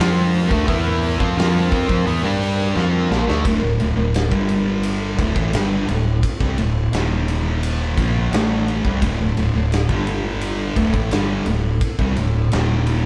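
Sludgy and hypnotic, this stoner and doom metal excerpt trudges along at 86 BPM in D minor, cut from a longer piece and played as if by a band live in one room with moderate reverb. Two thick fuzz guitars sit in the background and grind through the riff for the whole stretch, one warm and one dark, while a bright, overdriven, double-tracked electric guitar plays its own riff only until 3.4 seconds. Underneath, a growling fingered bass adds punchy overdrive, and a big acoustic drum kit sits up front with bright cymbals, a tight kick and a medium-tuned snare, carrying a touch of vintage 12-bit sampler grit. A very quiet, swarming drone of detuned, granular sustained chords hovers beneath, tense and slowly evolving. A drum fill from 2.8 seconds leads into the second section, where the harmony circles through D5, G5 and Eb5 power chords with a brief turn to D minor.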